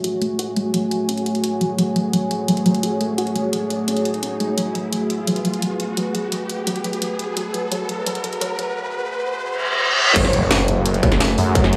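Dark technical drum and bass, tense and futuristic, where a moody analog pad, a soft round pluck with 12-bit sampler grit and dub echo, and a warbly, nostalgic tape-like pad all pump under sidechain over an overdriven kit with cracking snare and bright hats. A filter sweep on the pluck drives the build-up while a riser from 2.0 seconds and a reverse cymbal lead into the drop at 10.2 seconds. There, an impact lands, a distorted layered kick joins, and a snarling, growling saw bass enters up front, all set in a lush hall reverb.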